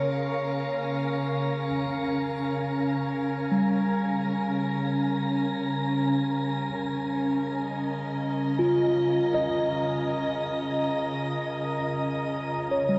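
A glassy FM pad with ensemble chorus holds slow-blooming sustained chords up front as a clean tine electric piano plays arpeggios through phaser and delay and a breathy, wind-like tuned noise layer hovers high above, the serene, weightless ambient passage, cut from a longer piece, drifting in free time through a dark, warm production bathed in a long shimmer reverb.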